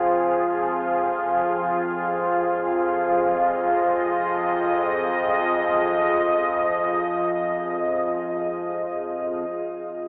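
A deep, moody pad sits up front in this ominous dark ambient drone. It holds sustained chords built from detuned sawtooth unison layers over a sine sub octave, with slow attacks, long releases, chorus and a shimmer reverb. Beneath it, an evolving analog drone, also up front, blends sawtooth, pulse and sine waves with pulse-width modulation and wave folding, thickened by its own chorus. An eerie, inharmonic FM bell plays arpeggios at the edge of hearing, its fast-attack, decaying tones shaded by chorus and tremolo. The music floats, unmetered, on a single minor chord until 9.5 seconds, when the pad and bell stop and the drone carries on alone to 10.1 seconds. A wet echo chamber and a telephone-like filtering give this passage, cut from a longer piece, a vast yet distant character.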